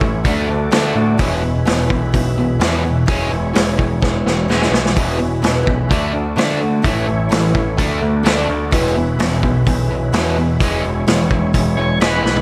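Classic rock with a confident, driving straight feel, this short cut from a longer piece rides on a distorted, double-tracked electric guitar riff with a bright, compressed bite. A growling picked bass, overdriven and amped, holds down the low end, while an up-front vintage drum kit of hi-hat, kick, snare and toms sounds saturated and gritty, with a tight kick and a rolled-off top, and rolls through a fill at 4.0 seconds. In the background, a picked old ladder-braced acoustic guitar adds woody, boxy accompaniment on worn strings, and a lightly overdriven tonewheel organ holds sustained chords through a slow rotary speaker, chorus vibrato and audible key click. The harmony moves among D, E6 and A under a light reverb. At 11.8 seconds a thick, overdriven second tonewheel organ breaks in with a brief percussive melody, spun through a slow rotary speaker with slapback echo, shortly before the drums hit another fill.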